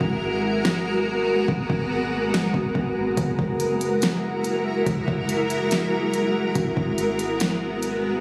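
A hazy, melancholic slice of atmospheric cloud-rap opens with a bright, blurred granular pad holding sustained chords up front, its built-in reverb and sidechain pumping giving it a cloudy, evolving shimmer over G#m9 and F#9. Beneath it, a deep, boomy 808-style bass sits low, while a smooth R&B drum kit with a soft kick, fat snare and silky hats carries a half-time feel at 142 BPM in G# minor. After a break that lasts until 3.2 seconds, the drums drop out at 7.9 seconds as the pad and bass carry on to the end, all wrapped in a light digital ambience on this phone-captured, compressed excerpt.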